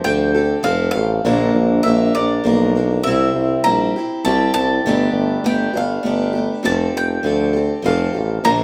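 A moderate studio reverb gives this short cut from a longer piece the feel of a band playing live together in one large room. It is jangly, hopeful folk rock with a heartland rock flavour, moving at 100 BPM in a straight 3/4. A bowl-back mandolin carries the melody with a bright, picked, double-string ring. Underneath, a picked steel-string acoustic guitar sits up front with fresh strings, a concert polish and the occasional finger squeak. A clear, vintage-toned tuba anchors the bass up front with scooped notes and a pop sensibility. All three play throughout the 8.6 seconds over the progression Fadd9, Bb, C and Gadd9, returning to Fadd9 at 6.6 seconds.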